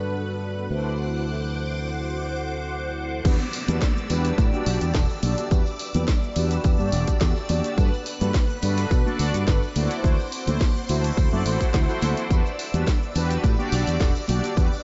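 A straight 4/4 groove at 106 BPM drives this cosmic, sleek nu-disco excerpt in E minor, where a punchy, tube-saturated fingered electric bass pumps under lush, phased string-machine chords and round, brassy synth brass with chorus and analog delay, until at 3.2 seconds the drop brings in an up-front electronic kick and a faint downlifter, followed a moment later by a house kit with a cracking snare and low-pass-filtered hats and cymbals and by background tambourine and congas, all moving through Gmaj7, D7 and Em7 in light reverb.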